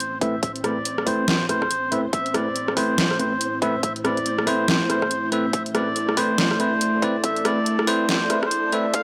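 A reedy, nasal melodica carries the melody up front with dub echo, over a deep, detuned analog pad swirling with chorus and phaser, an overdriven dubstep kit of hi-hat, rim click and a deep snare, and a very quiet, flickering granular texture, setting a cavernous, dark half-time mood in this deep dubstep fragment. From 0.2 seconds a bright, bell-like tine electric piano adds clean stabs under a filter sweep that runs through the whole build-up, while a punchy, overdriven electronic kick joins the low end. The sound is dry and gritty, with transformer saturation and a light digital ambience.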